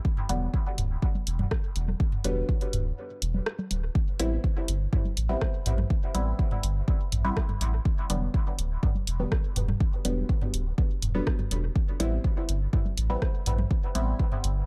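Dub techno at 123 BPM in A minor, meditative and nocturnal, this short cut from a longer piece sets an overdriven deep kick up front beside a round, dark sawtooth-and-sine bass with sidechain pumping, while muted, detuned chord stabs with a filter sweep, chorus, phaser and dub echo move between Em7 and Am7 over an overdriven deep house kit of hi-hat and rim click and analog toms and congas pumping in the background, with a break at 3.0 seconds.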